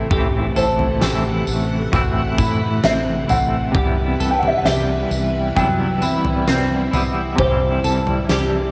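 Dream pop at a slow 66 BPM in C lydian, this ethereal, floating excerpt from a longer piece sets a soft, boxy felt-muted upright piano melody with tape echo over a clean, picked semi-hollow electric guitar with tremolo and subtle chorus, a second compressed, fingered semi-hollow guitar playing up-front arpeggios through analog chorus and tape echo, lush sawtooth string-machine chords with a slow attack and ensemble chorus, a round, woody fretless bass with ensemble chorus in the background, and a huge arena drum kit with punchy kick, fat snare, tambourine and toms entering at 0.1 s, as the harmony moves from Am to Cmaj7 and C in a home cassette recording with light reverb.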